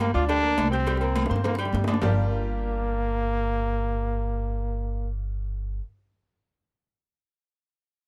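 Salsa at 208 BPM in G minor, driving and danceable in this short cut, with a punchy, close-miked trombone soloing up front with vibrato until 5.1 s over a brilliant upright piano, a dark, woody pizzicato upright bass, and background congas, tight cowbell and bongos, and saturated metal-shell timbales and agogo bells, with a drum fill from 0.9 s to 2.0 s before the percussion stops at 2.1 s, as the harmony moves from C5 to Gm7 under light reverb.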